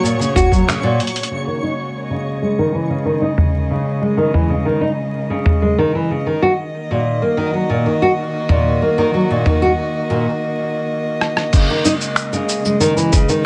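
Wistful and delicate, this folktronica piece sets fingerpicked nylon-string guitar arpeggios, treated with a low-pass filter and tape echo, over a dark, woody string quartet holding bowed chamber chords with vibrato. A twinkling granular shimmer sparkles only through the opening 1.3 seconds, while a muffled, pitched-down sampler-style kit of cabasa, finger snaps, rim clicks, hi-hat, toms and crash plays under low-pass filtering, with a thumpy electronic kick returning at 11.5 seconds after a break. Filter sweeps on the drums and guitar run through the long middle stretch, and vinyl crackle and a small-room reverb frame the mix.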